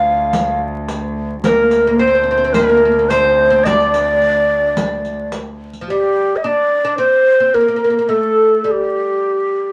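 Vinyl crackle sits over a moderate studio ambience in this short Arabic maqam ensemble cut from a longer piece, its mood longing and soulful. A breathy, bright ney carries the melody up front with a straight tone and soft attack, heard from start to finish. A plectrum-plucked fretless oud with doubled strings adds a woody second line throughout, alongside a dry, fingerpicked koto that drops out at 5.3 seconds. Beneath them, a distant chamber cello section holds a bowed drone with a reedy, gut-string period tone. A riq with dark jingles and hard hands enters at 0.3 seconds; by 5.9 seconds the riq and cello drone have dropped away, leaving the ney and oud to carry the closing stretch.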